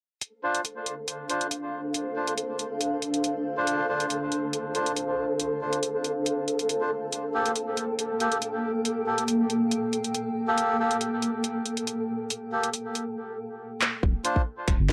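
A reedy, breathy melodica carries this dark, meditative deep dubstep excerpt, its stabs filtered low and thrown into dub echo as a filter sweep runs across it until 14.0 seconds. Set at 139 BPM in 4/4 with a half-time, lightly swung feel in D minor, the music moves from Dm7 to Gmadd9 at 7.1 seconds and back to Dm7. A cloudy, granular pad holds sustained chords beneath, blurred and evolving with a moving notch, while a flickering triangle-toned texture sits quieter on a single A4. Up front, a garage kit of finger snaps, handclaps, hi-hat and a cracking snare drives the groove, closing with a drum fill at 13.8 seconds. At 14.0 seconds a thick, saturated sub bass and a tight electronic kick arrive louder than the rest, after the pad and the texture have stopped. The cassette-taped home recording sits in a wet booth ambience.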